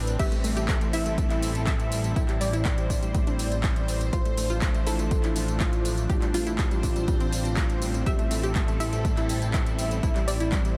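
Dreamy yet driving, this progressive house excerpt moves in a straight 4/4 pulse through Am7, Dm7/A and Gsus4/A, with the pad, bass, lead and analog pluck, along with the hats, percussion and cymbals, pumping to the sidechain under a moderate cathedral reverb that soaks the mix. A fat, detuned sawtooth bass holds a low A beneath a punchy, overdriven kick and a metallic, overdriven kit of hi-hat, handclaps, tambourine and crash cymbal, while a lush, phased unison pad sustains the chords with slow attack and long release. Up top, a very quiet unison pluck with a moving notch carries the melody, shadowed by an airy, dark sine lead with vibrato and analog delay, as a round analog pluck ripples arpeggios in the background.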